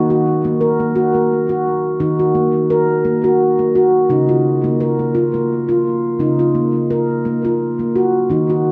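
A hypnotic, gentle world meditation piece at 86 BPM in 3/4, with a light swing on the sixteenths, cut from a longer work and moving from Ebm to Db at 4.1 seconds. A solo handpan carries the whole 8.7 seconds with up-front arpeggios between Db3 and Bb4, its stainless-steel tone ringing and mellow under soft fingertips, trailed by a diffuse ambient delay. A wet church reverb surrounds the playing and lets each note hang in a calm, spacious haze.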